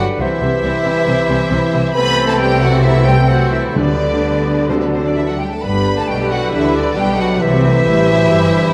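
A quick, lively and graceful classical-period orchestral movement with a rubato feel, cut from a longer piece, in which a distant, expressive violin section carries the melody with vibrato and portamento above a pure, crisp flute, focused second violins, a smooth-topped clarinet and a roomy oboe, while a very quiet viola section and a light-vibrato bassoon fill the accompaniment, a mellow French horn section holds sustained chords, cellos and close double basses anchor the bass, soft round timpani sound only from 3.8 to 5.4 seconds, and a generous scoring-stage reverb surrounds the orchestra.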